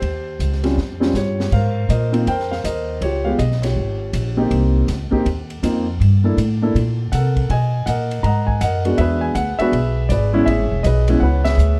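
Jazz piano trio swinging at 161 BPM in 4/4, with a playful, relaxed mood in this short cut from a longer piece. A concert grand with deep bass and long sustain carries the melody up front, while a woody, thumpy upright bass on gut strings sits beside it and an acoustic drum kit with dark cymbals, a high-tuned snare and a boomy kick plays further back, adding a fill from 0.8 to 1.5 seconds. Light reverb and a dark production frame the chords as they move through extended harmonies like Eb13, Db7#11 and Amaj9 before a band accent at 11.4 seconds.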